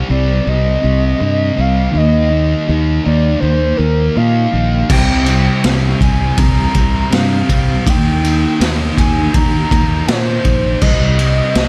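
A straight 4/4 pulse at 81 BPM sets a brooding pace for this hazy shoegaze and dream pop rock excerpt in C minor. A thick, double-tracked fuzz guitar carries the dark, distorted riff from the start, picked and pushed up front with a lush chorus, while a bright, growly fingered electric bass sits directly beneath it. Above them, a reedy, woody FM lead holds sustained, soft-attack tones with vibrato, its detuned character thickened by chorus and echoed through a digital delay. At 4.9 seconds a raw garage drum kit arrives in a small room, gritty and saturated, with a boomy kick, a medium-tuned snare, crash and ride cymbals, and a rolled-off top. The chords move from Cm through Eb5, C5 and Eb6 before returning to Cm, all wrapped in a dark production with studio ambience.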